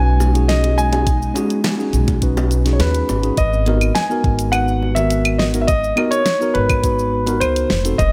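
Sunset chillout in G# minor at 104 BPM, this short excerpt from a longer piece moves at a smooth 4/4 with a straight feel and a warm mood. A concert grand piano carries the melody up front, its tone deep in the bass and touched by digital delay, while a mellow, clean tine electric piano supplies accompaniment beneath it through tape echo. An ethereal, airy pad sits in the background with slow-attack sustained chords, its detuned sawtooth layers and noise colored by ensemble chorus, reverb and phaser, and it drops out at 3.3 seconds. A woody pizzicato upright bass stands forward in the mix, joined at 0.2 seconds by a produced R&B kit with a fat snare, hi-hat, cabasa and claves, plus very quiet, low-tuned bongos played with hard hands. An electronic soft kick enters at 1.1 seconds, and the harmony shifts from B69 to G#m9 at 3.4 seconds under a light studio reverb.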